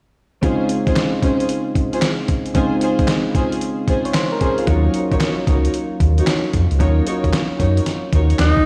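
A flirty, bouncy new jack swing groove at 113 BPM in Db major opens at 0.4 s with mellow, chorused electric-piano-like synth keys, woody, bowed string stabs with slapback echo and digital delay, and a gritty, compressed sampler-style kit of thumpy kick, fat snare, hi-hat and handclaps, all swinging on the 16ths. At 4.7 s the chords move from Dbmaj7 to Ebm7 as a deep, round analog bass enters, and a clear, scooped alto saxophone steps up front at 8.4 s. A lush hall reverb gives the short clip a big arena sound.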